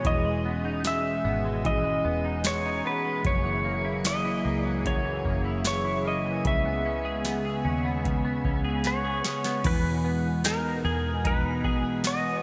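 Dream pop at 75 BPM in E lydian, floating and ethereal, where a clean lap steel guitar carries the melody through lush chorus, shimmer reverb and digital delay over a semi-hollow electric guitar's picked arpeggios and a mellow, flute-like pad holding sustained chords. A booming analog drum machine with a deep kick, crisp snare, metallic hats and tambourine sits up front, joined at 0.1 s by a dark, round, foam-muted fingered bass. The chords move from Emaj7 through F#7 and C#m7, a drum fill at 8.8 s leads back to Emaj7 at 9.6 s, and a wet hall reverb and bright 1980s-style digital sheen frame this short cut from a longer piece.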